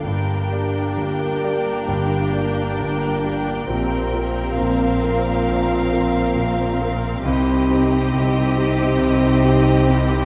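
In a free, rubato 4/4, this sorrowful, bittersweet cinematic fragment has a con sordino violin section carrying the veiled melody with vibrato, while a second muted violin line, lush violas and a muted double bass section add dark, bowed ensemble tone. A mellow French horn section holds sustained chords with light vibrato over a cello bass line and a grand piano accompaniment, both sitting in the background. The moderate reverb of a scoring stage gives the strings and brass a soft, spacious bloom.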